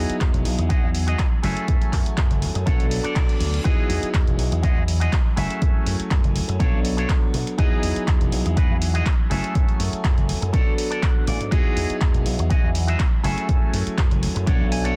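Filtered disco house at 122 BPM in E major, this joyful, feel-good excerpt from a longer piece rides a lightly swung 16th-note groove in 4/4. A punchy electronic kick sits up front, joined by analog drum-machine handclaps and hi-hats whose hats pump against the sidechain, both re-recorded in a small room. An amped slap bass with an envelope filter holds the low end from E1 to B2, while a brilliant concert grand piano with deep bass and long sustain plays the accompaniment through a phaser and low-pass filter, pumping with the kick. A clean, twangy picked electric guitar with its own envelope filter carries the riff, and it adds fills at 2.9, 10.8 and 14.5 seconds, the first paired with a reverse cymbal in the background. The chords cycle through Emaj9, F#m9 and Bm9, and the dry, dense, heavily limited master keeps the sound close and loud.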